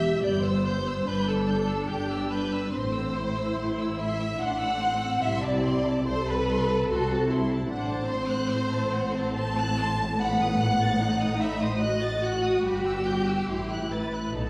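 Swaying in a triple metre with uneven, rubato timing, this excerpt from a slow romantic movement for string orchestra carries a melancholic, elegiac mood. A distant, soft-attacked violin section sings the high melody with vibrato, while a second violin line sits up front with a smooth top; the violas add rich, focused accompaniment close by, and warm cellos and double basses anchor the bass with expressive portamento. All five sections play together for the full 14.5 seconds, bathed in the wet reverberation of a church or concert hall.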